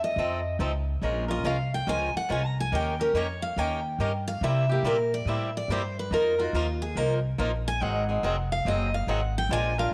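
A swung 4/4 pulse drives this bittersweet yet fiery slice of acoustic string swing, cut from a longer piece, with a woody, thumpy pizzicato upright bass on gut strings holding down the low end. A full-bodied, freshly strung steel-string dreadnought takes the lead throughout as a picked solo, finger squeaks audible up front, while a boxy, bright swing-style guitar enters at 0.2 seconds with picked accompaniment over minor-ninth and dominant chords. Light studio reverb gives the close, lively trio a touch of space.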